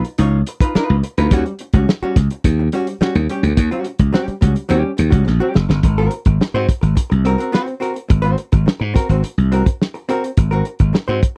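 Dry and close, with little reverb, this 1970s-style studio recording has a gritty, energetic funk sound, cut from a longer piece in a straight 4/4. Up front, an acoustic soul drum kit sounds muffled and lo-fi, its tight kick, medium-tuned snare and hi-hat carrying a rolled-off top end. The slap bass sits equally forward, bright, growly and punchy, with a direct, amped electric tone moving through its low register. A hollow-body jazz guitar plays clean, picked, compressed accompaniment with a dark character, sitting lower in the mix as it outlines Db9 and Eb7#9 chords. A drum fill from 5.3 to 5.8 seconds leads into a second section, where the harmony settles on Ab9 until the drums stop at 11.4 seconds.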